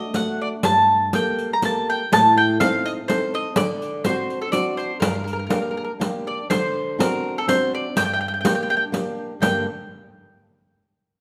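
This Italian folk serenade, cut from a longer piece, has a wistful, passionate mood, moving in 3/4 at 123 BPM with a rubato feel in G minor, tuned to A4 = 441 Hz. Up front, a picked mandolin carries the melody between A4 and Bb5, its doubled strings giving a round, warm tone. A fingerpicked flamenco guitar, also up front, accompanies from G2 to D5 with an acoustic warmth. A riq joins at 0.1 s, close and dry, its dark jingles struck with hard hands. The harmony moves from D through Gmadd9, Adim and D7 to Gm, then shifts at 6.5 s to a new passage that swings from D7 back to Gm. A moderate recital-hall reverb surrounds the trio with a gentle sense of space.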